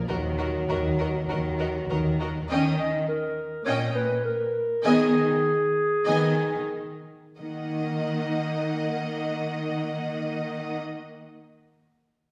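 Heard from further back on a wet scoring stage, this dramatic, stormy fragment of a romantic orchestral movement slows between 1.3 and 7.4 seconds, with lush violins carrying the melody over a smooth second violin line, focused violas and up-front cellos, while a mellow bassoon and distant double basses sound only in the opening seconds before a roomy solo clarinet takes up a second line from 2.8 seconds.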